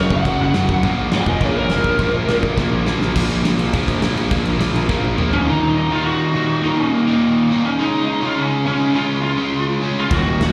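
A dark, overdriven lead guitar through a small cranked amp tears into a solo over a bright, double-tracked distorted riff guitar, growly fuzz bass and a big, punchy rock kit with a fat snare in this angry, urgent punk rock excerpt from a live gig heard through the venue's PA, where the bass and drums drop out around 5.5 seconds, leaving the two guitars alone over Ebm and Db until the bass and drums return at 10.1 seconds.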